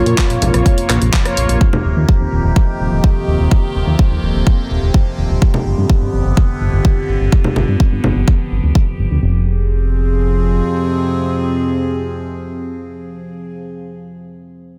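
Melancholic and cinematic, this melodic techno excerpt in F minor moves at 126 BPM in a straight 4/4. It is driven by a punchy, up-front electronic kick from 0.2 to 8.8 seconds and a tape-warm house kit of congas, handclaps, hi-hat and rim click in two short bursts. A fat, detuned sawtooth bass with tube saturation and a filter sweep plays until 10.6 seconds, and brief brassy, warbling synth-brass stabs with chorus and delay sound at the very start. A bright, morphing wavetable pad with phaser sustains chords throughout, over a vintage pulse-width drone, and the pad, brass, bass and drone all carry sidechain pumping as the chords move from Bb minor through Eb and G to F minor in a light digital ambience.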